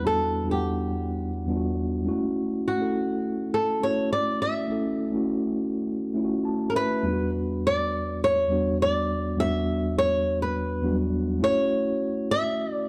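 Soul at a smooth, cinematic mid-tempo in straight 4/4, cut from a longer piece, where an up-front, fingerpicked flamenco guitar with fresh, warm acoustic strings carries the melody over a mellow, clean tine electric piano heard through built-in speakers, which adds a brief fill at 6.2 seconds as the harmony moves between Em7 and F#m7, all set in a moderate echo-chamber reverb with small-room ambience.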